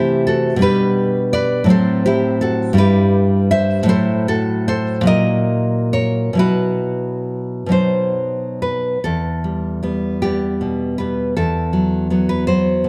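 A dark, warm production places the guitar up front in a moderate scoring-stage reverb whose 1.8-second tail gives each note a soft halo. This is a short excerpt of a romantic piece for solo classical guitar, melancholic and wistful, moving in a lilting 6/8 with a free, rubato feel. The nylon-string guitar is fingerpicked on fresh strings, its tone bright against the shadowy mix, with deep classical resonance in the bass and an audible finger squeak as the hand shifts. The harmony drifts through inverted chords such as Am/C, G/B and Em/G before leaning on F#7/A# and settling from Bsus4 to B. At 9.0 s a new section begins on Em, closing over a B5/E sonority as the clip ends at 12.9 s.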